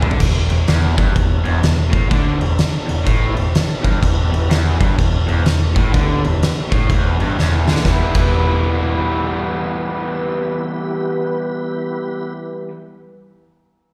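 A drum fill kicks off this heavy, smoky blues rock and southern rock excerpt, with punchy, fat-snared drums, an overdriven, double-tracked garage guitar riff with slapback echo, and a round, foam-muted bass driving a swung groove, while a full tonewheel organ with slow rotary shimmer holds chords in the background from 4.0 seconds, the drums dropping out at 8.3 seconds after another fill, all heard through a venue's PA in a recital hall's reverb.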